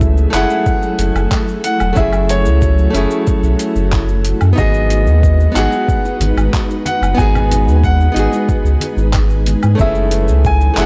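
A straight 4/4 groove at 92 BPM, set by a gritty, overdriven sampler-style soul kit of handclaps, hi-hat, shaker and woodblock alongside a thumpy electronic kick, carries this relaxed, smooth sunset chillout excerpt in F# dorian, where a deep, round sub bass sits up front, a bright fingerpicked nylon-string guitar with tape echo plays the accompaniment, an ethereal, detuned pad with ensemble chorus and reverb sustains chords, a clear baby grand piano with long sustain and analog delay carries the melody, very quiet ringing congas and bongos join from 4.6 to 9.9 s, and the dry, cassette-saturated recording moves from F#m9 to G#m7 and back.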